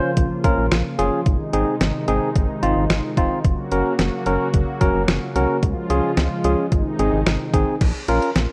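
Heard through worn, warbling cassette tape with pitch drift and a moderate recital-hall reverb, this short synth-pop excerpt moves at 110 BPM in 4/4 with a driving, nocturnal mood over a Bbm, Ab, Gb, Db, Ab progression. A barky, lightly overdriven tine electric piano sits up front with a brassy, airy analog pad under chorus holding sustained chords, while a rubbery, hollow square bass with a resonant filter pluck enters at 0.2 seconds. A clean 12-bit drum machine arrives alongside it with a thumpy kick, fat snare, hi-hat and crash cymbal.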